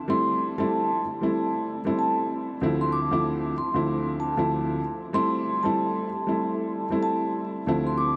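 Swung sixteenths at 95 BPM in 4/4 set a tough, reflective hip hop mood in this short cut from a longer piece, moving from Am7 to Dm9 at 2.6 seconds and back to Am7 at 5.1 seconds. A dark upright piano sits up front with a woody, slightly detuned, worn tone and audible action noise, carrying the accompaniment in its low and middle register. Above it, a soft-mallet vibraphone plays a high melody with a metallic ring, slow motor vibrato and tape echo, and the whole dreamy mix is soaked in a huge ambient reverb.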